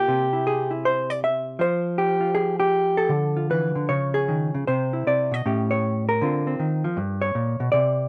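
Cool and swinging, this short passage cut from a longer piece features a solo hollow-body jazz guitar playing for its full 8.1 seconds. The tempo sits at 158 BPM in 4/4, with a swung eighth-note feel that loosens into rubato. The electric guitar has a dark, clean, fingered tone and sits up front, ranging from G2 up to E5. The harmony moves from C7b13 through a chordless stretch at 1.6 seconds, then passes through Dmadd9, Dbadd9, C, A7b9 and Cm11/D before settling on Gdim. A light reverb gives the solo a touch of room around it.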